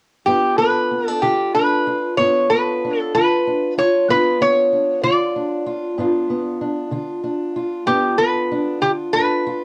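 A metal-body resonator slide guitar and a fingerpicked steel-string acoustic guitar enter together at 0.3 s, opening this short excerpt of soulful, swaggering acoustic country blues. The pace is slow, about 63 beats per minute in 12/8 with a straight feel, settled in G mixolydian over a G7 chord. Up front, the resonator carries the melody with a bright, nasal, metallic slide tone picked with fingerpicks, sitting between G4 and D5. Beneath it, the parlour-style acoustic supplies a dark, boxy fingerpicked accompaniment ranging from G2 to F4, a little lower in the mix. Both parts carry the grain of a home cassette recording in a modest booth ambience, and the passage ends at 9.6 s, plainly cut from a longer performance.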